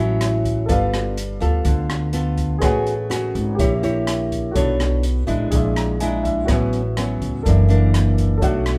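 A straight, relaxed bossa nova groove in 4/4 carries this sunny excerpt, anchored by an up-front, full-bodied nylon-string guitar with audible finger squeak, over a woody, growly pizzicato upright bass, an open jazz kit of hi-hat, rim click and boomy kick entering at 0.2 s, and a grand piano comping lush jazz chords before its brief fill at 5.5 seconds, all of it played live in one room with a moderate large studio reverb.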